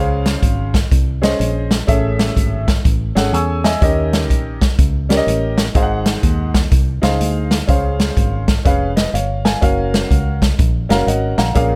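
Uptempo gospel in Db major at 124 BPM with a swung 4/4 feel, this jubilant, hopeful excerpt from a longer piece sets a clear, woody upright piano with long sustain up front, adding fills at 3.1 and 10.6 seconds over a foam-muted, punchy fingered electric bass and a swinging big-band drum kit with a medium-tuned snare and punchy kick, all in a dry studio room as chords move from Dbmaj7 through Amaj7, Eb7 and Ab7 to Gbmaj7.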